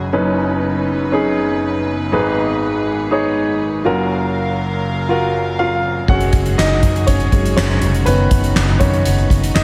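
A straight 4/4 pulse at 121 BPM drives this uplifting, anthemic piano-driven pop excerpt in F# major: a smooth, up-front grand piano accompanies floating, sul tasto strings holding sustained chords, then at 6.1 s the piano takes a solo as a soft-mallet drum kit with a boomy kick, fat snare, handclaps and crash enters alongside a round, dark, foam-muted electric bass, the mix bathed in a lush hall reverb for a big arena sound.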